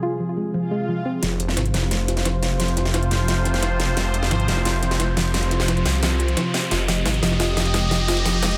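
A snarling, distorted saw bass growls up front from 1.2 seconds, its detuned unison tone thickened with tube saturation and a moving notch that keeps it restless across the lowest register. This is a tense, mechanical slice of dark technical drum and bass in a straight four, cut from a longer piece. It opens on a sweeping, resonant pad of bright, airy sustained chords with chorus, while a soft, round pluck plays gentle arpeggios in the background with chorus and delay, both filtered as the moment unfolds. A swell arrives at 0.6 seconds, and at 1.2 seconds two drum kits enter together: a huge-snared, layered dubstep kit with metallic hats, and a gritty, pitched-up jungle sampler kit with a high-tuned snare sitting tape-toned beneath it, both kits filtered to thin their hats and snares. From there a drum fill, a riser and a filter sweep on the pluck drive a steady build-up, all wrapped in light digital reverb.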